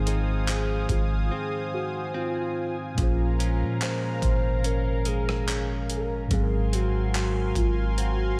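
Late-night and sensual, this short contemporary R&B excerpt in Bb minor moves at a relaxed 72 BPM with a light swing, with chords drifting from Fm7/Ab to Bbm7 at 3.0 seconds and Ab13 at 6.3 seconds, and a break between 1.3 and 3.0 seconds. A velvety synth lead carries the melody with chorus, vibrato and a diffuse ambient delay over a mellow tine electric piano, a smooth detuned analog pad with chorus, and a clean direct-recorded electric guitar picking arpeggios in the background through its own delay. Underneath, a deep, boomy 808-style bass sits up front while a gritty, overdriven sampler-style drum kit of thumpy kick, rim click, hi-hat and handclaps enters at 0.1 seconds, all set in light reverb.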